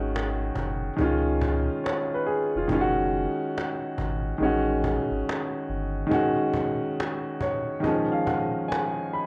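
A lazy, swung 4/4 groove sets the pace of this reflective, melancholic lo-fi hip hop fragment, cut from a longer piece. A warm, intimate upright piano carries the accompaniment up front, its smooth, vintage, woody tone softened by cassette tape, a low-pass filter and plate reverb, with long sustain and audible action noise. Beneath it, a deep, thick saturated sub bass with a fast attack and triangle-like body holds sustained notes until it drops out at 6.0 s. A distant, woody cajon with hard hands and faint snares joins at 0.2 s, sitting low in the mix as if heard across a large room. The harmony drifts through G#5, C#add9, F#sus2 and Amaj7 before circling back, all framed by moderate studio reverb and a gentle tape haze.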